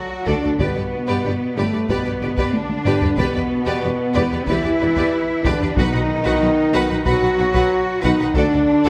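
Cinematic epic orchestral film score at 93 BPM in E minor, dramatic and relentless, opening with a mellow French horn section and distant trombones holding sustained chords over a lush cello bass line, joined at 0.3 s by a dark, woody violin melody in the background, a clear, intense second violin line, smooth violas, a background tuba, rich double basses and hard-stick taiko with a drum fill at 2.5 s, while articulate timpani strike at 5.8 s as the harmony moves from D through G and Em7 to B, set in a moderate scoring-stage reverb.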